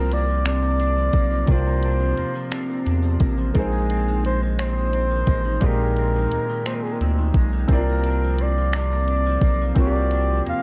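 Warm and intimate, this slow R&B excerpt moves at 58 BPM in a six-eight lilt, lingering on suspended ninth chords that shift from C9sus4 to Bb9sus4 and back. A mellow flugelhorn carries the melody from the start, its light vibrato and scooped notes giving it a jazz-inflected, solo voice, colored by a slapback echo. Beneath it, an electric guitar at the edge of break-up plays a second line with a twangy, fingered tone and analog chorus, while a polished grand piano supplies accompaniment with long sustain. A round, deep analog bass sits up front with a nasal, sine-like body, and a smooth, electronic drum kit entering at 0.1 seconds pairs finger snaps and warm hi-hat with a soft kick. The production is dark and dry, with little reverb, keeping the whole band close and cozy for just over ten seconds.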